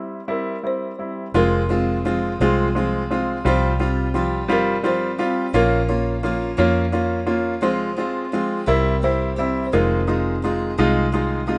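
Bathed in a moderate plate reverb, this rough home-demo mix has a dulled, capped top end, and it's cut from a longer six-eight pop ballad with a dramatic, aching mood. A clear, polished baby grand piano sits up front with the accompaniment, while a woody, rustic folk marimba, dry and boxy, carries the melody from the background. At 1.3 seconds a bright, full-bodied steel-string acoustic guitar joins with picked arpeggios and audible finger squeak, alongside a dark, round, foam-muted electric bass placed up front, as the chords move from Fm through Bbm to a closing Fm7.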